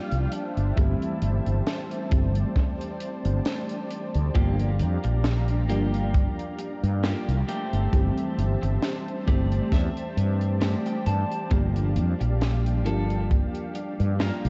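Vaporwave at 67 BPM with a lightly swung 16th feel, woozy and nostalgic, where a distant alto saxophone with vibrato and tape echo sounds only until 1.7 seconds over a tremolo- and chorus-treated FM electric piano, a thick, detuned unison pad, a growly fretless bass up front, a tight small-room funk kit with a high-tuned snare, and a tight, up-front kick, while a slightly broken-up electric guitar riff enters at 4.3 seconds, a clean guitar fill appears at 8.8 seconds, and chords move between Am7/G and Gm7 in a dreamy, cassette-dulled mix soaked in cathedral reverb.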